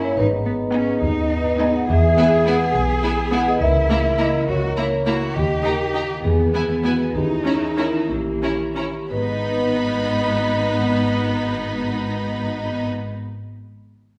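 Soft-mallet vibraphone, metallic and ringing with a slow motor vibrato, carries the melody of this magical, sneaky and whimsical cinematic cue in G# minor and 6/8 at 58-70 BPM, joined by a dark, smooth violin section on the high melody, a lush symphonic violin section on a second line, an even viola section in accompaniment, distant, roomy French horns holding warm chords, mellow fingerpicked harp arpeggios, an expressive cello section with portamento and a soft-attack double bass section entering at 0.2 s, all set back in a recital-hall reverb as the music slows between 4.5 and 9.1 s before settling onto G# minor.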